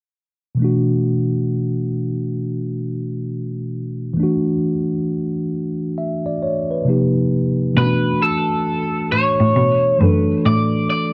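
Soulful and late-night, this slow R&B fragment in B minor moves at 67 BPM with a swung sixteenth-note feel, opening at 0.5 seconds on a mellow, clean tine electric piano, placed up front, that carries the chords alone. At 7.8 seconds a single bowed cello enters on the bass line, nasal and boxy with expressive vibrato and portamento, alongside a bright, twangy electric guitar through a small old amp whose picked melody sounds slightly broken-up, compressed and lo-fi, tinted by analog chorus. A moderate studio reverb and dark, warm production frame this passage, cut from a longer piece.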